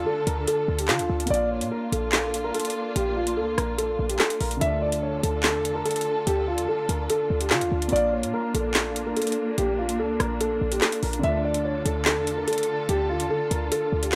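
A dry, gritty recording in a small room frames this dark, cold drill excerpt, built on a half-time feel that moves between D minor and B-flat chords. A boxy concert grand piano with deep bass and audible action noise carries the melody, while a soft, thick-felt upright piano sits in the background and a lush string section holds bowed sul tasto chords with vibrato. Punchy, tight 808-style bass notes with a fast attack and a noise layer sit beneath an up-front electronic drum kit, which enters at 0.3 seconds with a woody snare, metallic hi-hats, rim clicks and handclaps.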